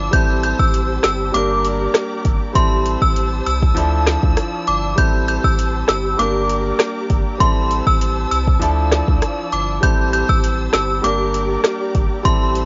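A straight 4/4 dancehall groove at 99 BPM sets a sultry, bouncy mood, driven by an up-front afro-pop drum kit of deep kick, woody snare, rim click and metallic hi-hats that sounds electronic and tape-warmed. Beneath it, a round sine sub bass holds the low end with a fast attack and sustained notes, while a clear, intimate grand piano plays accompaniment, its action noise audible and its notes ringing with long sustain. A lush, distant string section bowed with vibrato and portamento carries sustained chords, breathing with a sidechain pump. Over the top, a vintage FM synth chime plays the melody in a high register from 0.1 s, its inharmonic, warbling tone colored by chorus, tremolo and analog delay, decaying into a long release. Set in A phrygian and cycling through Am7, Gm and Dmadd9, this cut from a longer piece sits in a dry, home-made cassette sound whose dull top end gives it a lo-fi patina.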